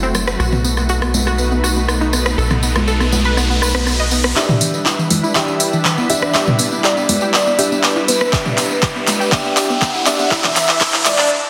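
A dense, heavily limited and reverb-washed mix opens this driving, expansive progressive house excerpt in E minor at 121 BPM, where a lush supersaw pad, a round analog pluck arpeggio with dub echo, a punchy sequencer bass that drops out at 4.3 s and two layered drum kits (overdriven big-room claps, crisp hats and rim clicks up front, plus small-room congas, rim click and toms) all pump under sidechain alongside jingly tambourine. Meanwhile a riser builds, a velvety synth lead arrives at 4.1 s and muted upright piano stabs at 4.4 s, joined at 5.1 s by a glassy, very quiet drifting texture, and an overdriven electronic kick enters at 8.3 s before a reverse cymbal marks the break.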